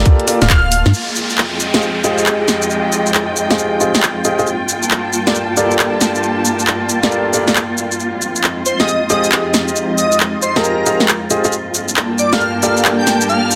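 The sound is dense and heavily limited, set in a small, wet room that gives this soulful, late-night UK garage cut a close, enclosed feel. A swung two-step groove comes from a tight, up-front electronic kick and a layered garage kit of handclaps, hi-hat, shaker and a cracking snare, while a hollow, organ-like FM bass with a percussive, decaying attack pumps under the opening and drops out at 0.9 seconds. A clear, intimate baby grand plays filtered stabs with audible action noise and tape echo, and a filter sweeps across it as a dark, lush symphonic string section bows expressive, vibrato-laden lines alongside. From 0.9 seconds, a silky vintage string machine holds mellow, slowly evolving chords with ensemble chorus, and an electronic downlifter sits in the background for a few seconds. An airy, dreamy lead with a detuned, bright edge flickers briefly at the start and returns at 8.7 seconds, colored by chorus, cassette tape and tape echo over the shifting minor ninth chords.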